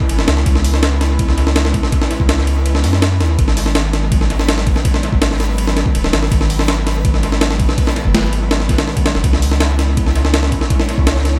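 A straight 4/4 breakbeat runs at 164 BPM in this short drum and bass and jungle cut in C# minor, its nostalgic, raw mood set by a sampler-style kit that sits up front from 0.0 s. The kit is compressed, pitched up and gritty, with a thumpy kick, a high-tuned snare, hi-hat and ride cymbal, and it carries the sound of being re-recorded in a large room, plus an analog delay. Beneath it, a soft dub sub bass enters at 0.1 s, deep and round, with a fast attack and sustained notes blending triangle and square wave tones. Far in the background, a reversed, swelling texture drifts high above, dreamy and detuned, with a slow attack, long release, granular grain, a bright edge and its own built-in reverb. The harmony moves from C#m7 to G#m7 at 3.4 s and back to C#m7 near the end, all within an echo-heavy mix with light reverb.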